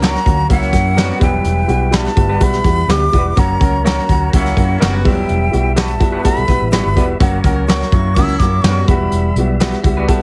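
A heavily compressed, radio-style sound with light reverb frames this urgent, passionate slice of uptempo 1960s-style soul at 125 BPM, moving between F# and Emadd9. A breathy, unsteady jazz flute with vibrato carries the melody over a dark, smooth horn section playing a second line in the background, while a baby grand piano with short sustain, a clean tonewheel organ with key click and slow rotary speaker, and bright, twangy guitar stabs with tremolo and tape echo fill out the harmony. Up front, a vintage brush kit with a punchy kick drives beside a round, foam-muted fingered bass, and a second slightly broken-up guitar enters with a riff at 6.0 seconds.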